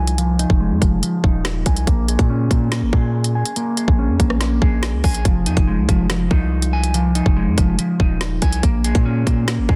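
Drill hip hop in a cold, tense half-time feel, featuring a fingered, slightly broken-up electric guitar playing arpeggios up front over Fm7 and Bbm7, treated with phaser, low-pass filter and digital delay, with a filter sweep on the guitar through the first 5.3 seconds. A punchy, heavy 808-style sine bass with a noise layer, a fast attack and a decaying tail anchors the low end, while the electronic drum kit enters at 0.1 seconds with a hard-clipped kick, woody snare, crisp hi-hats and rim clicks, roughened by vintage 12-bit sampler grit. The parts sit in digital ambience under a dense, heavily limited modern master.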